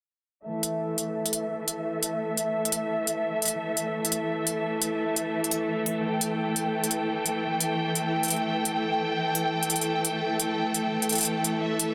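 A half-time drum and bass groove at 172 BPM in 4/4 sets the pulse, its sixteenths swung to 59% with a half-time feel. This short cut from a longer piece feels cinematic and dark. A lush bowed string section enters at 0.5 s, holding smooth, vibrato-rich sustained chords between E3 and G5, its sound kept mellow by a low-pass filter that sweeps across the ensemble through to 11.9 s. An electronic hi-hat joins at 0.6 s, crisp and layered, re-recorded in a small room and sitting up front alongside the strings. The harmony sits on an A5 chord from 0.5 s. Echo chamber reverb and small room ambience surround the parts, and the master is dense and heavily limited in a modern style.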